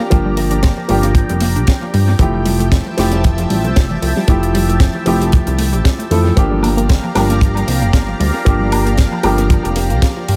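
A dry, tight kick sits up front in this sleek, groovy nu-disco clip cut from a longer piece, alongside a tight acoustic kit of hi-hat, high-tuned snare and woodblock touched with analog delay, plus a glossy, retro synth bass with a chorused pulse-and-saw tone. A dark, intimate grand piano with audible action noise plays the accompaniment, while a bright, detuned pad with chorus and phaser holds sustained chords and a lush unison pluck ripples arpeggios in the background; piano, pad and pluck all pump with sidechain. The harmony moves from Gm7 to Fmaj9 at 2.2 seconds and back to Gm7 at 6.4 seconds, all inside an echo-heavy studio reverb.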